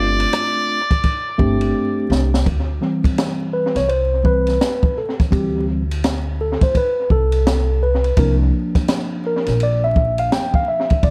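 Mellow and nocturnal, this jazz-hop excerpt in D minor moves at 84 BPM with a swung sixteenth feel, opening on a buzzy, thin muted trumpet note with light vibrato and analog delay that stops at 2.1 seconds. A woody, thumpy pizzicato upright bass and an open jazz kit with dark cymbals, a high-tuned snare and a boomy kick, carrying its own analog delay, sit up front, and the drums play a fill from 1.8 to 2.5 seconds. From 2.5 seconds the clean, mellow tine electric piano takes a solo over suspended ninth chords, all set in a small room with light reverb, an echo-heavy mix and vinyl crackle.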